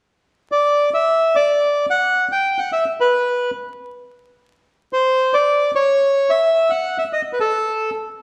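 A lone bandoneon, reedy and up front with a boxy small-room character, plays a dramatic, melancholic rubato tango line from 0.5 to 7.9 seconds, set in a large, wet studio reverb heard from further back with vinyl crackle, in this cut from a longer piece.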